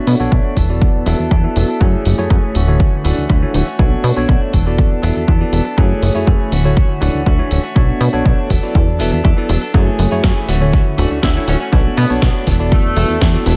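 A plucky, up-front analog bass with a sawtooth bite and fast, decaying attack drives this sensual, funky slice of filtered disco house, pumping against a punchy electronic kick and a house kit with cracking snare and tape-warmed hi-hats. A clean tine electric piano with phaser comps through Bm7, E9sus4, F#m9 and Dmaj9 while a twangy, direct-recorded guitar riff trails tape echo. A filter sweep runs throughout the echo-heavy, dark-topped mix, and a tight, bright horn section slips in with a short melody at 11.2 seconds.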